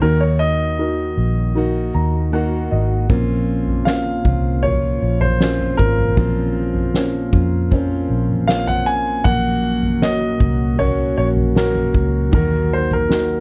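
Heartbroken and longing, this slow pop ballad moves at 78 BPM in Bb minor, a short passage cut from a longer piece. An intimate grand piano carries the melody up front, its action noise audible, while a worn, slightly detuned upright piano sits in the background with woody accompaniment and a fill between 1.6 and 3.1 seconds. A fingerpicked steel-string acoustic guitar adds full-bodied arpeggios with fresh strings, and a foam-muted electric bass gives a dark, round, punchy low end. At 3.1 seconds a mellow tonewheel organ enters with sustained chords through a slow rotary speaker, its key click present, alongside a soft-mallet drum kit with a fat snare, boomy kick and toms. The harmony moves from Ebm to Bbmadd9, then to Gb/Bb and back to Ebm, all captured in a dry, close 1970s-style studio sound.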